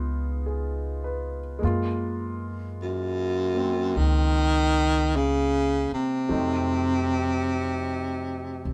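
The baritone saxophone carries the melody up front from 2.8 seconds, its warm subtone tinged with light vibrato and scooped notes in a jazz solo style. This is a smoky, wistful jazz ballad at a slow 51 BPM in 4/4, swung on the eighth notes. Beneath it, the concert grand piano accompanies from the start, intimate and natural, with deep bass, long sustain and audible action noise. The pizzicato upright bass anchors the low end with a woody, thumpy tone, its steel strings lending a bright edge. The harmony moves from Db7 to Gbmaj7 and then F7b9 at 6.3 seconds, heard through moderate studio reverb as a band playing live in one room, in a short cut from a longer piece.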